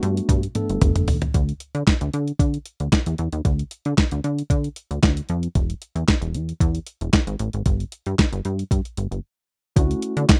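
A dry, rough home-demo sound frames this danceable, feel-good early-eighties boogie funk, where a thumpy, up-front detuned 8-bit drum machine with kick drum, handclaps, hi-hat, snare and toms plays alongside a punchy sawtooth analog bass with a plucky filter. A mellow tine electric piano colours only the opening Gmaj9 and the closing Dmaj9 at 9.8 seconds, with a drum fill at 0.3 seconds and a break at 9.2 seconds along the way.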